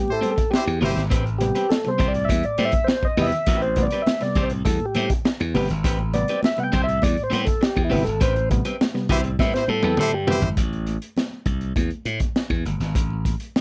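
The recording is dry and close, with little reverb: a cool, funky slice cut from a longer piece in A minor at 102 BPM in a straight 4/4. A clean tonewheel organ carries the solo melody up front, turning through a slow rotary speaker over a single Am9 chord, while a reedy, overdriven electric piano adds low stabs through a phaser. An electric guitar at the edge of break-up plays compressed, picked accompaniment. A clear horn section with light vibrato adds a second line only briefly at the opening and again near the end, when the band hits accents and the crunchy breakbeat kit rolls through a drum fill. That kit is saturated and dark, with a punchy kick and high-tuned snare, sitting up front beside a glassy, growly slap bass, while very quiet, damped congas sit beneath. By 10.6 seconds the organ, piano, guitar and horns have dropped out, leaving drums, congas and bass to carry the closing seconds, with the bass stopping just before the drums and congas finish at 13.6 seconds.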